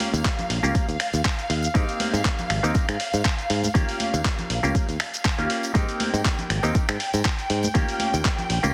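Feel-good and sunny, this brief cut of filtered disco house at 120 BPM in Ab major swings its 16ths over an Eb7 to Abmaj7 vamp, with a punchy overdriven electronic kick up front, a gritty sampler-style kit of finger snaps, handclaps, hi-hat and shaker, bright congas and tambourine in the background, a growly fingered electric bass entering at 0.1 seconds, a nasal, hollow clav through a phaser, and a lush, bowed string section holding high chords, all of them except the kick pumping to the sidechain under light digital reverb and a heavily compressed radio sound.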